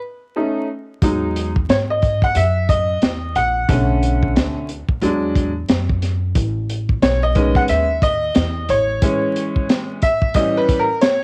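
Jazz-hop at 90 BPM in 4/4 with a swung sixteenth-note feel, this smoky, cool excerpt is cut from a longer piece and tuned a little below standard pitch. A bright, slightly detuned upright piano carries it from 0.4 s to the end, its worn, woody tone sitting up front as it moves through lush extended chords such as Emaj9, Bm9 and Amaj9#11. At 1.0 s a crunchy breakbeat kit arrives with hi-hat, a tight kick and a high-tuned snare, its dark, rolled-off top colored by cassette tape. A plucked upright bass with steel strings enters at the same moment, giving a woody low end until 9.0 s. Light small-room reverb, vinyl crackle and the texture of a home cassette recording wrap the whole piece in a hazy, lo-fi atmosphere.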